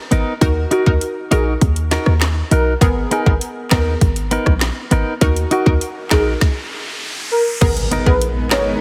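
Tough and sultry, this dancehall excerpt rides an up-front island pop drum kit of woody snare, metallic hats, handclaps and rim clicks beside a punchy, short 808-style bass. A twangy clean electric guitar plays arpeggios and a round, detuned analog pluck with chorus adds accompaniment over Ebm and Abmadd9 chords, while a velvety synth lead with chorus and delay carries the melody. A riser arrives at 5.9 seconds, leading into a stop and then an impact at 7.6 seconds, and a cloudy granular pad with sidechain pumping brings sustained chords at 8.2 seconds, all within a heavily compressed radio sound and light reverb.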